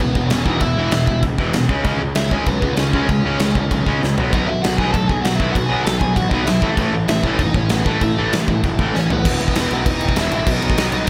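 Rebellious and upbeat, this punk rock excerpt charges along at 195 BPM in E major, with a dark, smooth overdriven lead guitar carrying the melody over a hollow-body semi-hollow guitar and a distorted electric guitar, both playing riffs in the background. A growly fuzz bass sits underneath, while an up-front acoustic drum kit with a tight kick and bright cymbals drives the beat, adding drum fills at 4.0 and 8.9 seconds. The distorted guitar drops out at 9.2 seconds as a new section begins, all in a light reverb.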